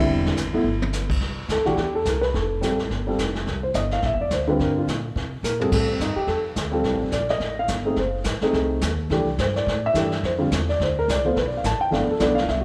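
A slightly detuned upright piano and a thumpy, gut-strung upright bass open this playful jazz trio fragment together, with a vintage brush kit joining a moment later and adding a drum fill at 0.6 seconds. From 1.2 seconds the piano takes a solo that runs to the end, sitting up front with an intimate, woody character and audible action noise. Underneath, the pizzicato bass keeps a dark, plucked foundation in the low register, while the brushed snare, hi-hat, punchy kick, toms and dusky crash cymbals add a mid-forward, rolled-off swing, with a second fill at 5.4 seconds. The brisk, swung feel carries the harmony through add9, sus and seventh colours, passing through a diminished chord before settling toward a G9. A moderate recital-hall reverb gives the trio a natural, roomy glow, as though heard in a church or concert hall, in this cut from a longer piece.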